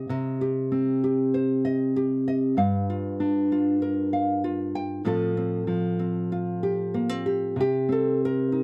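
Intimate and melancholic, this brief folk cut at 97 BPM in C dorian features a lone fingerpicked nylon-string guitar, up front, with a dark, woody tone from old strings, moving through Cm, Gm7 and F/A before settling on C5 at 7.6 seconds, all captured with close, detailed microphones and a touch of light reverb.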